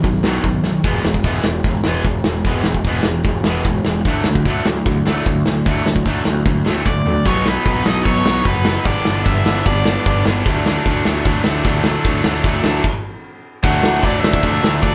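A straight 4/4 beat from a loose, up-front indie drum kit with dark cymbals and a punchy kick drives this rebellious, upbeat punk rock fragment, where a bright, compressed distorted electric guitar and a tight distorted guitar set in the background play riffs over a growly fuzz bass, a biting overdriven guitar melody arrives at 6.9 seconds and returns at 13.6 seconds, and drum fills at 0.6 and 6.9 seconds plus a stop at 12.8 seconds punctuate a live, one-room sound in light reverb.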